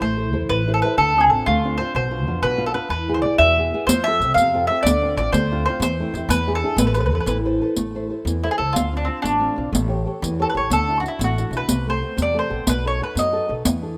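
A steady 6/8 pulse at 123 BPM, felt in dotted quarters, carries this passionate, romantic Italian folk serenade in A harmonic minor, a brief cut from a longer piece. The mandolin leads up front with picked double strings and a warm, woody tone, while a fingerpicked flamenco guitar supplies dark accompaniment beneath it. A pizzicato upright bass on gut strings sits just as close, giving a thumpy low anchor. From 3.9 s a riq joins, its bright jingles struck with soft hands and heard close and dry. The harmony circles through Am, Dm7 and E before a second passage from 7.8 s turns toward A7 and Dadd9 and closes on B7. The sound is intimate, with little reverb and the rough character of a home demo mix.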